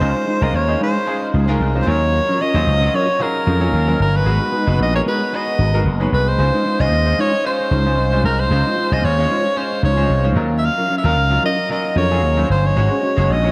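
Urban and glossy, this swung pop passage drifts through a dreamy, reverb-soaked mix over Dbmaj9, Ebm9 and Abm7 chords, reaching Ab7sus4 near 12.8 seconds. A clear soprano saxophone carries the melody up front in a jazz style, with vibrato, scooped notes and a touch of delay. Beneath it, a bright concert grand piano with deep bass and analog chorus plays the accompaniment, a dark, clean electric guitar with ensemble chorus plays a fingered riff in the background, and a punchy, growly vintage slap bass sits boldly up front.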